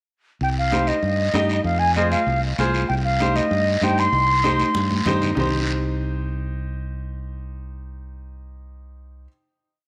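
A reedy, airy silver concert flute leads this short, driving cumbia in C minor at 194 BPM, playing up-front motif-based call phrases with tape echo from 0.4 to 5.1 seconds over a dark, round fingered electric bass figure and bright, woody upright piano chords in triad voicings. Raspy guiro scrapes a long-short-short pattern while ringing, high-tuned congas tucked in the background add danceable off-beat hand drums through the Cm, Fm, Cm progression until a drum fill at 4.7 seconds. The bass and piano then hold a final chord from 5.4 seconds in a moderate echo chamber reverb.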